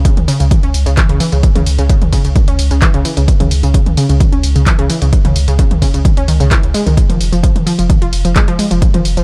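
A close, nearly reverb-free sound frames this intense, driving cut of peak-time techno, with a punchy analog kick sitting up front in straight 4/4 time. Beneath it, a deep, thick, saturated sub bass with a triangle-like tone pumps with sidechain compression through a low-pass filter, while a lush, warbling pluck riff of detuned sawtooth and wave-folded sine tones also pumps, its filter sweeps trailing digital delay. A punchy analog drum machine fills in with handclaps, hi-hat, ride cymbal, tambourine and toms, all sitting lower in the mix through the roughly 9-second section.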